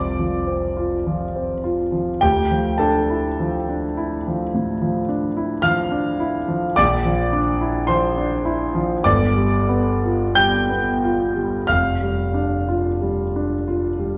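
A lush recital-hall reverb surrounds this short fragment of a longer piece, giving it the resonance of a church or concert hall while the instrument itself sits up front and intimate. A single concert grand piano carries the whole performance, its tone warm and natural, with deep bass and the soft mechanical sounds of the action clearly audible. The music is impressionist classical solo piano in a slow, freely breathing rubato, spanning from the low register up into the high treble. It opens on a lone high note before gliding through colored harmonies: a D minor chord with an added ninth at 2.2 seconds, then B-flat, a G dominant seventh, and finally an open suspended F chord at 11.7 seconds. The mood is serene and hazy, and the fragment ends at 14.2 seconds.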